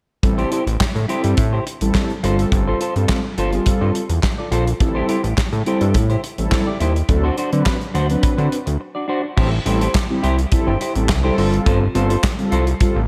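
A big arena sound with moderate stage reverb frames this slick, funky early-eighties boogie funk excerpt in A minor at 105 BPM, where a fat, saturated analog bass sits up front beside a polished acoustic drum kit with tight kick, handclaps and crash, while round, chorused synth brass with vibrato and a dark, clean semi-hollow guitar riff, both touched by slapback echo, ride Am7, G9sus4 and D7 changes through a brief break at 8.8 seconds.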